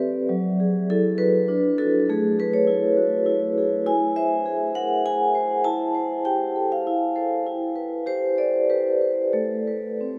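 A contemporary classical piece for solo vibraphone in 3/4 at 100 BPM, this brief fragment has a playful, warm mood and a freely rubato feel, moving through chords such as F#sus2, Amaj7, Eaug, Fmaj7/E and closing on Amadd9 at 9.3 seconds. The vibraphone, struck with medium hard mallets, sits up front with a metallic, ringing yet smooth and dark tone, its medium motor vibrato shimmering across a range from F#3 to A5. A deep cathedral reverb with a long 7.2-second decay surrounds it, giving the dark production a spacious, wet sound.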